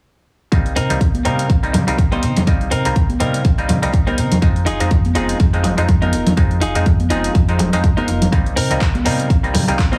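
A swung groove drives this short, funky filtered disco house excerpt, where an up-front, punchy electronic kick anchors a snappy FM slap-style bass with tube saturation, a percussive clav through a combo amp with phaser, analog drum-machine handclaps and hi-hat, hard-handed maracas and congas, and a bright, picked clean electric guitar riff with 12-bit sampler grit entering at 0.8 seconds. The bass, clav, guitar, hats and percussion pump against the kick, and all but the hats are muffled by a low-pass filter, all in a compressed radio-like mix with small-room ambience as the chords move from Cm7 to Fm7 and back.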